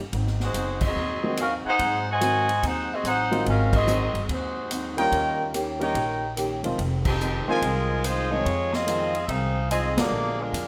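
A dark, lightly vibrato-touched saxophone section carries the melody up front in this energetic, joyful stretch of big band swing, with a trumpet section of matching shade punching in stabs from 1.7 seconds. Beneath them, a woody pizzicato upright bass, a smooth vintage grand piano entering at 1.2 seconds, a boxy picked archtop guitar in the background and a natural-sounding drum kit with a punchy kick, snare, hi-hat, ride and crash keep the swing moving over chords from Ab7 through Eb7 and Fm7 to Bb7. The band hits shared accents throughout, and a moderate echo-chamber reverb lends a roomy glow to this passage, which is cut from a longer piece.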